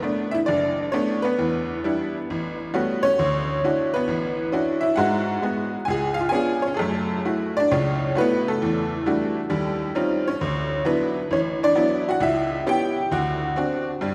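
Solo jazz at 133 BPM in 4/4, swinging and cool with a loose rubato feel, played on a lone tack piano whose metallic, jangly, bright and vintage tone sits up front, moving through extended chords such as Bm7, Dmaj9 and C#7b9 while a lingering church reverb of 3.5 seconds rings around it, in a 14-second fragment cut from a longer piece.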